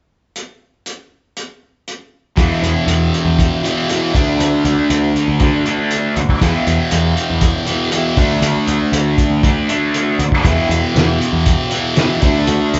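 Damped, thuddy drums with a fat snare open this dark, trippy psychedelic rock excerpt alone until 2.4 seconds, when a thick, double-tracked fuzz guitar riff with phaser, a growling overdriven picked bass and a soft, flute-like tonewheel organ on slow rotary speaker behind them join over an alternating E minor and D progression in a muffled, roomy live-band sound.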